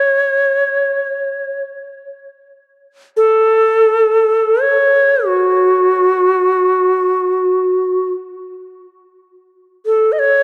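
Meditative and haunting, this brief fragment of free-time world meditation music in F# minor features a lone Native American-style cedar flute, airy and woody with vibrato and a soft attack, close-miked and up front, bathed in a wet plate reverb within a dark production.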